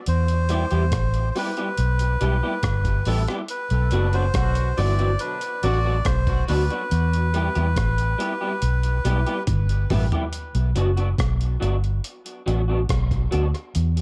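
Dub reggae with a deep, spacious mood, this straight 4/4 groove is cut from a longer piece. A dark, round, foam-muted fingered electric bass sits up front, anchoring the music throughout, while a gritty, pitched-up sampler-style breakbeat kit supplies a thumpy kick, hi-hat, rim click and toms, with a drum fill from 9.5 to 10.3 seconds. An electric guitar through a small old amp adds slightly broken-up, lo-fi picked accompaniment, treated with ensemble chorus and tape echo. A reedy, breathy melodica carries the melody with a close-miked, nasal tone and tape echo until it drops out at 9.4 seconds. Briefly, a distant horn section with vibrato and octave doubling appears in the background as a second line, and the whole track sits in a digital ambience as the chords move between Em and Bm.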